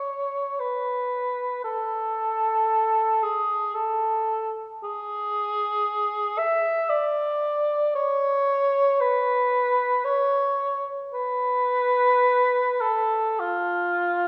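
Unbound by any steady pulse, this classical fragment unfolds in free time, letting each phrase breathe at its own expressive pace. A lone cor anglais carries the entire passage from 0.0 to 14.3 s, singing in a yearning, mournful voice that stays between E#4 and E5. Its tone is mellow and touched with light vibrato, yet its note attacks land with a punchy clarity that keeps the instrument up front. A generous recital hall reverb surrounds the playing, lending the sound a roomy, faintly distant glow as if heard in a church or concert hall. Tuned to A4 = 441 Hz, the fragment feels like a private lament lifted from a longer work.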